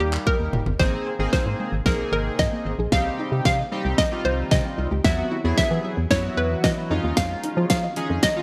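Euphoric and upbeat, this dance-pop excerpt moves at 113 BPM in a straight 4/4 in Ab major, with a bright 1980s-style digital production and light reverb. A hollow, bouncy square-wave pluck carries the melody with chorus and delay, over a glossy, retro chorused polysynth built from pulse and sawtooth tones with a filter sweep. An organ-like FM bass, dark and percussive with sidechain pumping, sits up front beside a punchy pop drum kit of kick, fat snare, toms, hi-hat and handclaps, bathed in gated reverb. A drum fill opens the passage, and from 0.8 s a lush, detuned unison pluck adds very quiet arpeggios as the music builds. At 1.7 s an ethereal, airy pad joins with very quiet sustained chords shimmering through ensemble chorus and phaser. The harmony travels from Eb through Abadd9, Cm and Esus2 to Dbadd9.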